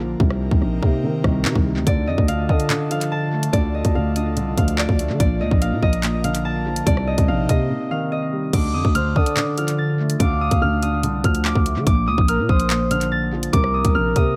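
Ominous and cold, this half-time drill passage at 144 BPM in D phrygian sits in echo-heavy digital ambience, with a felt-muted upright piano full of audible action noise, a growling, buzzy 808-style bass and an up-front drum kit of hard-clipped kick, bright hats, handclaps, rim clicks and crash. An airy, detuned pad with chorus hovers in the background until 8.5 s, while a ringing, fingerpicked Celtic harp carries the melody from 1.9 s, both harp and piano trailing tape echo. At 9.0 s a flute-like synth lead with chorus and tape echo adds a soft second line over chords cycling through Dm, Bb and Cm7.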